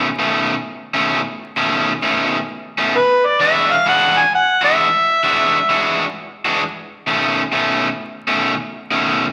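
A crunchy, bright overdriven electric guitar picks a swaggering blues riff from the start, joined at 3.0 s by a gritty, amplified harmonica solo with light vibrato, tongue slaps and scooped jazz-style notes, both up front in a rollicking swung excerpt bathed in large studio reverb with vinyl crackle over a B9 to E9 and back to B9 progression.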